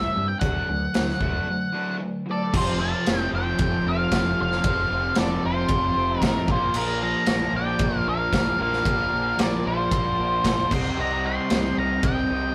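In a straight 4/4, this gritty, brooding classic rock fragment sets a dark, fuzz-drenched octave-fuzz lead guitar up front over a big rock drum kit with bright cymbals and a punchy kick, a growling, round overdriven fingered bass, a crunchy guitar riff in the background and a very quiet overdriven electric guitar riff. During a brief break, a barely audible slow-rotary tonewheel organ and a second, subdued octave-fuzz line enter, and a double-tracked cranked stack guitar riff joins at 2.5 seconds. A clear concert grand piano slips in at 11.0 seconds, all in a rough rehearsal-room sound with stone-room reverb and warm saturation.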